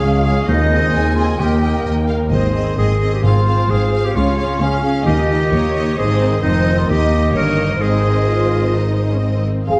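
A dark, warm production sits in a wet scoring-stage reverb, giving this heroic, adventurous cinematic passage, cut from a longer piece, a sense of space at 131 BPM in a straight 4/4 in Ab major. A distant, intense violin section carries the melody with vibrato, while a second, smoother violin section and a bright, vintage-toned solo clarinet weave second lines around it. Violas and a lush cello section hold the background close and focused, and a studio double bass section anchors the low end with a rich, even bowed tone. A concert harp rings out fingerpicked arpeggios beneath, and very quiet timpani struck with hard mallets on calf heads add dry, articulate punctuation from 0.5 to 5.7 seconds. The harmony moves between Ab, Eb, Fm and Db, and at 9.7 seconds a hollow, up-front flute and a mellow, roomy French horn section appear briefly as the passage is cut off.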